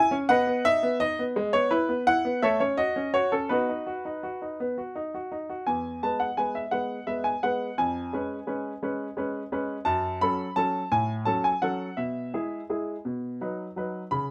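A clear baby grand piano opens this short excerpt from a classical-period sonatina, sounding natural and up front with short sustain and a touch of light reverb. In a straight 6/8, the playful, elegant solo ranges from E2 to B5, with its opening phrase giving way to a contrasting passage at 5.7 seconds that moves through a C#7/E# and F# minor harmonies before settling on B near the close.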